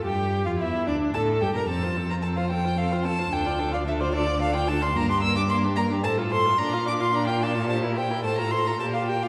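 Cheerful and graceful, this brief cut from a longer classical-period string quartet movement in quick triple time sets a smooth, vibrato-laden first violin melody up front over an even second violin line, an expressive viola accompaniment with soft attacks and portamento, and a rich, focused bowed cello bass, all heard from further back in a wet concert hall.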